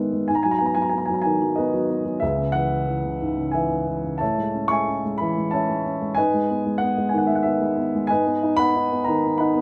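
Flowing in a supple three-beat metre with a rubato feel, this short fragment of lyrical classical solo piano lasts just under ten seconds. A dark baby grand piano carries everything alone, ranging from C#2 up to C#6 with a mellow tone and long sustain that lets each chord ring. The harmony moves through G#m7, C#m7, Amaj7 and Emaj7/G# before returning to G#m7 at 8.1 seconds. Despite the piano's shadowy colour, the mood comes across as sunny and warm. The instrument sits up front in a light reverb, giving the sound an intimate, close presence.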